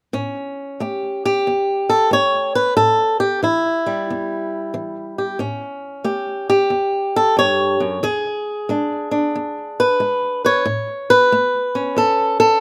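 The recording is dry and open-air, captured outdoors with barely any reverb, so the single acoustic guitar sits up front and close. This is gritty, swaggering acoustic country blues, cut from a longer piece and played in 4/4 with a loose swing on the eighth notes. A fingerpicked swing-style acoustic guitar carries everything alone from 0.1 to 12.6 seconds, its boxy, warm tone ranging from the low E string up into the higher frets. The harmony rests on A7 for most of the opening stretch, moves to E7 at 8.0 seconds, and settles on A as a short new section begins at 10.7 seconds. The result is a rough-edged, confident blues passage whose strutting character comes from the guitar's swung picking and plain outdoor sound.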